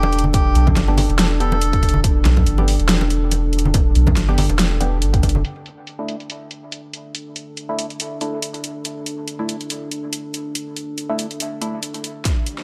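Dry and slightly lossy, this meditative, heavy deep dubstep excerpt at 141 BPM in half-time opens on the drop over Em7, where a round, soft sub bass, a punchy electronic kick and ringing, soft-handed congas sit beneath a reedy, breathy melodica with dub echo and a moody, detuned analog pad, before the bass, kick and congas drop out at 5.4 seconds and, over Dsus2, a hollow, phased organ stab takes a filter sweep above the huge snare and bright, filtered hats of the drum kit, closing with a drum fill at 12.3 seconds and a faint riser.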